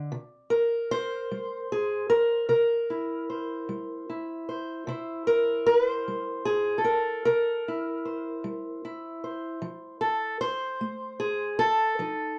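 A close, detailed recording with light reverb catches a dark, woody, boxy parlour steel-string guitar on old strings, fingerpicked up front as the only instrument in this swaggering, gritty acoustic country blues fragment, moving slowly at 50 BPM in a straight 12/8 pulse over a C7 chord that moves to F7 at 9.6 seconds.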